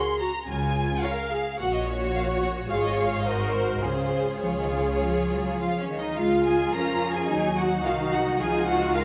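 A quick, urgent classical-period movement for string orchestra opens with an up-front violin section carrying the melody with expressive vibrato and portamento, over a rich, smooth viola accompaniment. At 0.5 seconds an even-toned cello section and an intense chamber double bass section with light vibrato take up the bass. At 1.0 seconds a clear, distant second violin section adds a supporting line, and the whole stormy passage sits in a moderate concert hall reverb.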